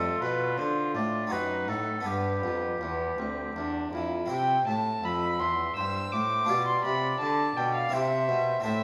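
An up-front, dark and nasal gut-string violin carries a second line alongside a distant oboe melody with light vibrato in this flowing, radiant excerpt from a baroque-style sonata movement in triple time, where a brilliant, airy harpsichord and a rich, reedy period-style cello supply the continuo, all four sounding throughout with a rubato feel inside a reverberant recital hall.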